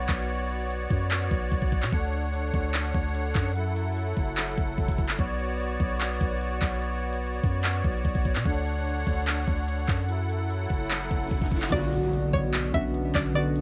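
Captured as a lo-fi home cassette recording with light reverb, this menacing, dark half-time trap excerpt sets a reedy, shimmering musette accordion's sustained chords over a deep sine 808-style bass and an overdriven, up-front drum kit of knocking kick, crisp hi-hats, handclaps and crash cymbal, until a very quiet riser from 10.9 s leads to an impact at 11.7 s that brings in a twangy resonator pluck melody, warbling detuned synth keys and brief, distant brass ensemble stabs.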